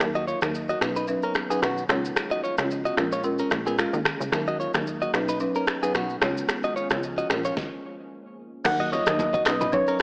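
Afrobeats in Eb minor at 111 BPM with a lightly swung 16th feel, mellow and sultry, cut from a longer piece and heard through an AM radio filter with light reverb. An up-front deep house drum kit with a deep kick and fat snare drives it alongside a punchy, funky plucky analog bass, a woody, rustic marimba, a bright, clean electric guitar riff run through tape echo, and a glassy, ethereal FM pad holding dark, very quiet chords. After a stop at 7.6 seconds, a round, gentle synth lead with chorus and vibrato takes the melody at 8.7 seconds, joined by very quiet, ringing congas and bongos.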